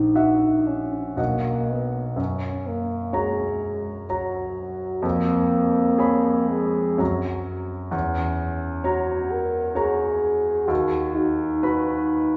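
A mellow, distant French horn sings a tender, lyrical melody in this romantic classical duo, moving with rubato at 63 BPM in 3/4 over a clear, intimate baby grand piano whose audible action noise and long sustain sit up front, as wet recital hall reverb, heard from further back in the room, surrounds this brief passage cut from a longer piece.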